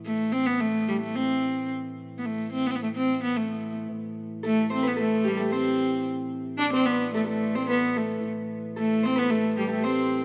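A rich, reedy viola da gamba carries the melody up front with light vibrato and an airy gut-string bow, over a soft chamber organ drone on flute stops with a touch of chiff, while a fingerpicked Celtic harp adds a ringing second line from 4.4 seconds in this ancient, driving medieval dance in A minor at 110 BPM, cut from a longer piece and set in a lush hall reverb with a rough home-demo mix.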